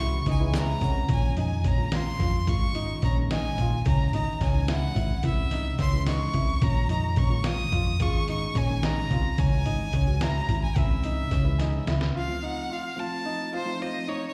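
Tense and intricate, this progressive instrumental band piece moves briskly in 5/8 at 217 BPM in eighths, with a straight feel in Bb minor, and is cut from a longer piece. A bright, intense bowed violin carries the melody with vibrato, while a clean tine electric piano heard through its built-in speakers supplies accompaniment and adds fills at 0.3 and 11.3 seconds, both parts colored by slapback echo, with the violin also given a digital delay. A dark, mellow concert grand piano plays arpeggios with deep bass and slapback echo, and a round, amped hollow-body short-scale picked electric bass sits up front until 12.1 seconds. A lo-fi sampler-style drum kit, compressed, pitched down and tape-toned with a thumpy kick and medium-tuned snare, enters at 0.3 seconds and closes with a fill before stopping at 12.1 seconds, while a grainy egg shaker flickers briefly in the background. The harmony shifts between Dbm and Bbm chords before landing on F for the final stretch, all heard as a live gig through the venue's PA with small room and recital hall reverb.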